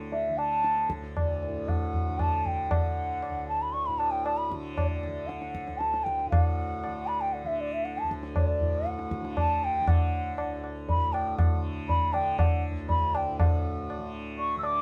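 Captured live in one room with a light touch of reverb, this meditative, radiant Hindustani passage in raga bilaval on D moves in 7/4 at 118 BPM and gradually speeds up, with a new section arriving at 13.4 seconds. A softly plucked tanpura lays down a buzzing, shimmering drone beneath a pure, hollow bamboo bansuri that carries the melody up front with vibrato and tongued phrasing. Close beside it, a low-tuned tabla rings out just as prominently.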